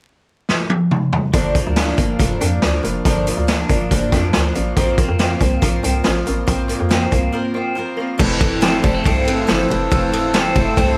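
A straight 4/4 beat at 140 BPM drives this restless, bittersweet slice of jangly indie pop in G dorian, cut from a longer piece. A raw garage drum kit opens with a fill at 0.5 seconds; it sits up front with a boomy kick, a medium-tuned snare and a gritty, saturated small-room sound whose top end is rolled off. At 1.3 seconds the band arrives on Gm7. A picked twelve-string acoustic guitar brings woody, octave-doubled shimmer. A small-amp electric guitar plays twangy, slightly broken-up arpeggios through phaser and digital delay. A hollow, knocking FM bass punches underneath with a bouncy, fast attack that then decays. The harmony shifts to Bbsus2 at 4.8 seconds, and after a brief break it moves on to Fmaj7. A very quiet, distant tambourine jingles in, and at 8.8 seconds an airy, flute-like pad adds mellow, slow-attack chords with chorus. The whole track carries light reverb and a layer of vinyl crackle.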